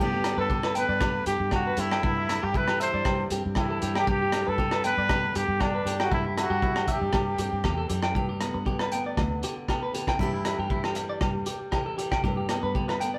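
A moderate studio reverb gives this sunny, danceable highlife guitar band the feel of a group playing live together in one room, and the recording is a short excerpt cut from a longer piece. At 118 BPM in a straight 4/4 and G major, the harmony moves between G, Em7/G and a rootless Am7/G, with a brief break in the chords before settling back on G. A close-miked trumpet with a straight mute carries the melody up front until 7.9 seconds, its tone nasal, breathy and intimate, with a soft attack and jazz-style vibrato. Beneath it, a clean, compressed electric guitar plays twangy picked arpeggios, while a bright, boxy parlour steel-string acoustic guitar is fingerpicked in the background, finger squeaks audible. A vintage fingered electric bass, foam-muted, round and amped, holds the low end. The crunchy breakbeat drum kit enters at 0.2 seconds with hi-hat, punchy kick and rim click, sounding saturated, gritty and rolled-off on top, while ringing agogo bells sit further back.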